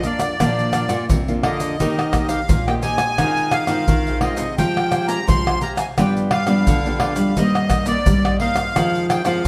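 A reedy, sweet accordion with light tremolo tuning carries the melody up front in this lively, joyful samba and choro cut from a longer piece, backed by close, dry percussion of tube shaker, pandeiro, tamborim and deep surdo played with hard hands, a full-bodied fingerpicked nylon-string guitar, a small fingerpicked nylon-string guitar on the bass line from 0.4 seconds, and a crisp picked cavaquinho in the background, all playing live together in a large studio with a wet reverb.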